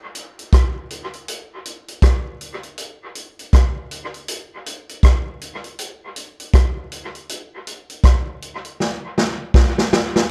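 A vintage acoustic drum kit sits up front from the first moment, playing a laid-back, meditative reggae groove at 80 BPM in 4/4 with a swung sixteenth-note feel, built from hi-hat, rim click, a medium-tuned snare and a punchy kick. Dub echo trails the kit, while the dry, dark production and rolled-off top keep the sound close and natural. A drum fill starts at 8.8 seconds and carries this short section, cut from a longer piece, to its close.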